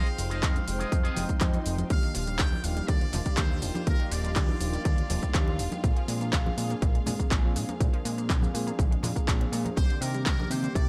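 A digital ambience surrounds this sunny, groovy nu-disco excerpt, with a punchy, overdriven electronic kick sitting up front and the house kit's handclaps, hi-hat and shaker, also treated with overdrive, re-recorded in a large room. A fat, saturated analog bass anchors the groove beneath mellow synth brass that sounds round and dark, colored with chorus and sidechain pumping. A bowed studio string section holds lush sustained chords in the background with the same pumping. A muted trumpet section with a buzzy metal-mute tone carries the melody through tape echo, dropping out at 5.6 seconds and returning at 9.8 seconds. At the opening, a twangy envelope-filtered electric guitar plays a short clean riff through chorus, a brief electronic swell sits in the background, and a very quiet, wave-folded unison pluck takes up arpeggios at 1.9 seconds. Ringing, medium-tuned congas from a small room add faint percussion as the harmony moves from Fm7 to Ebmaj9, Bb7 and Cm9.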